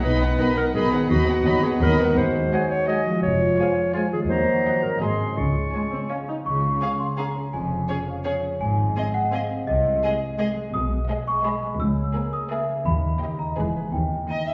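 Magical and quirky, this playful, whimsical film cue moves at 169 BPM in a straight 3/4, beginning in Db major and turning to G# minor from 10.7 s. Muted violins carry the melody over a dark, veiled, con sordino bed of second violins, violas, cellos and double basses, all bowed with vibrato, while a ringing, fingerpicked concert harp spins arpeggios throughout. In the opening stretch an up-front clarinet and a clear oboe play second lines, with a mellow, very quiet bassoon adding accompaniment and a tight French horn section holding sustained chords in the background. These winds and horns stop around 6.3 s, and a bell-like, delicate celesta joins the melody from 6.1 s, bright and airy at the front of the mix. The music sits in a wet recital hall reverb, heard from further back in the room, and is cut from a longer piece.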